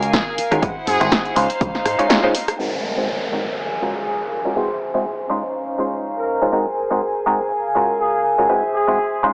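A brilliant trumpet section carries the vibrato-laced melody through this feel-good, funky filtered disco house excerpt at 122 BPM in Ab mixolydian, softened by a low-pass filter and analog delay. Beneath it, an up-front, stringy muted clav with phaser and a floating, sul tasto violin section pump to the sidechain. A punchy analog drum machine with hi-hat, rim click and snare, an electronic kick, and a bright slap bass with envelope filter and tube saturation open the groove over swung 16ths; the bass stops at 2.0 s and the drum machine at 2.6 s, when an electronic downlifter enters and a filter sweep runs to the end, all in a dry, gritty, small-speaker sound with moderate digital room reverb over chords moving from Gbmaj9 to Ab7alt and Dbmaj9.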